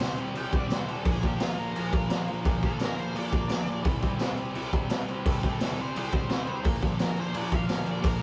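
Garage rock with a raw, rowdy mood, pushed along at 172 BPM in a straight 4/4 and cut from a longer piece, built on chords that move between C and Bb. Up front, a bright, double-tracked fuzz guitar picks a thick low riff over a gritty, saturated drum kit with a boomy kick and high-tuned snare, while a dark octave-fuzz lead guitar carries the melody further back and a buzzy vintage combo organ holds very quiet sustained chords. A jingly tambourine sits in the background until 7.8 seconds, and the whole band plays live together in a moderate stone-room reverb.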